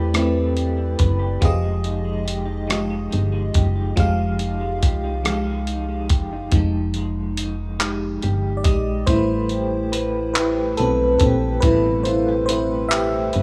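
A small room's light digital reverb wraps this sultry, yearning slow R&B excerpt in six-eight at 47 BPM, where a gritty, compressed soul sampler-style kit with a thumpy kick, hi-hat, rim click and handclaps sits up front beside a punchy, round FM bass. A lush, dreamy FM electric piano with a soft pad layer and chorus carries the dark Am9 and Fm9 harmony, then takes a solo from 6.5 s. Underneath, a slightly broken-up electric guitar with tremolo adds a picked second line.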